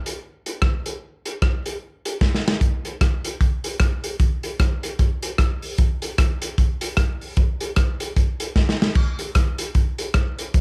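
A crunchy breakbeat drum kit, gritty and saturated with a punchy kick, dark cymbals and a rolled-off top, drives this cheerful, bouncy ska excerpt at 151 BPM in a swung 4/4, playing hi-hat, kick, rim click, snare and splash cymbal up front in a small room with light reverb, with drum fills at 2.2 and 8.6 seconds.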